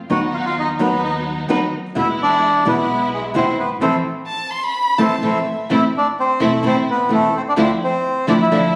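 Sultry and tense, this short cut from a longer tango moves at 128 BPM in 4/4 with a rubato feel, set in A harmonic minor and tuned to A4 = 438 Hz. A reedy, dark bandoneon carries the smooth melody up front, while a small, fingerpicked nylon-string guitar supplies accompaniment with audible finger squeak. A rich, bowed studio string section adds soft-attack stabs with vibrato, and a woody pizzicato upright bass on steel strings anchors the low end. From 4.3 to 5.7 seconds a single close, expressive violin sings a second line with vibrato and portamento, overlapping a band accent that begins at 3.8 seconds, as the harmony moves from B/D# and E to Am and later Dmadd9. The whole sits in a wet recital hall reverb, recorded on a phone in the room with added studio reverb.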